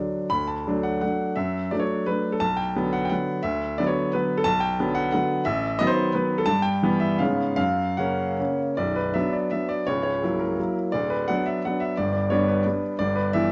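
A dark, roomy production places a clear, intimate baby grand piano up front, its long sustain and audible action noise carried by a moderate studio reverb. This nostalgic, capricious classical excerpt is a romantic triple-time dance in 3/4 with dotted rhythms and rubato, moving between 139 and 193 BPM across a range from B0 to B5. The solo piano opens in D major, turns to B minor at 4.5 s, and begins a new section at 8.8 s before the fragment ends at 13.5 s.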